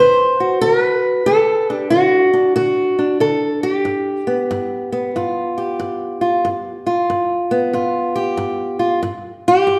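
A fingerpicked old ladder-braced acoustic guitar, dark and woody with the boxy tone of old strings, plays alone up front in this swaggering, gritty acoustic country blues excerpt at 93 BPM with a swung 4/4 feel in G mixolydian, moving from D7 to G7 at 3.9 seconds before stopping at 9.8 seconds, all bathed in the wet reverb of a recital hall.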